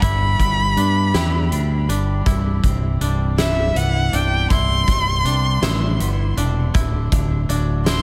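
A straight 6/8 pulse carries this soaring, cinematic post-rock fragment, anchored by a huge arena drum kit with a fat snare, punchy kick and hi-hat in a big, natural room, beneath a growling, overdriven fingered electric bass sitting up front. Twangy, clean twelve-string electric guitar arpeggios with subtle chorus and analog delay mingle with bright, woody koto arpeggios played with fingerpicks and also given delay, as the chords move from G to Cmaj7 and reach D at 6.7 seconds. Over the top, a rich, expressive solo violin sings the melody with vibrato and portamento, its bowed line trailed by analog delay.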